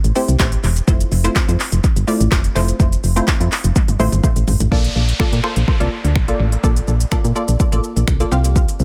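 Dance-pop with a summery, euphoric mood, heard in a short excerpt cut from a longer piece in a straight 4/4 pulse. A punchy, round FM bass with a dark, digital edge sits up front, pumping against the sidechain, while a layered deep house drum kit with a deep kick, woody snare and smooth hats, plus finger snaps, handclaps, shaker and toms, carries the groove with analog delay on it. From 0.2 seconds a lush, detuned unison sawtooth pluck with a noise layer and moving notch adds short, snappy notes, touched by subtle chorus and analog delay, over harmony moving from Am7 and Fmaj7 toward Bbmaj7 and a closing Csus4. A drum fill at 3.8 seconds leads into the second section at 4.7 seconds, where an electronic downlifter enters beneath the mix. The sound is dry and echo-heavy, with very little reverb.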